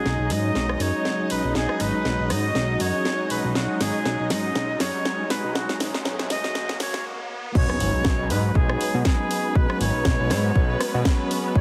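Swung sixteenths at 120 BPM drive this feel-good, groovy nu-disco clip in B major, where an airy silver flute carries the melody through delay over a chorused, pumping analog pad, a lush, distant string section with 12-bit sampler grit, and a fat, saturated analog bass, while an overdriven house kit with a cracking snare plays a fill through a filtered build-up and a faint riser, stops at 7.1 seconds, and returns at the 7.6-second drop alongside a punchy, up-front electronic kick and an impact, the whole mix carrying a heavily compressed, radio-like sheen.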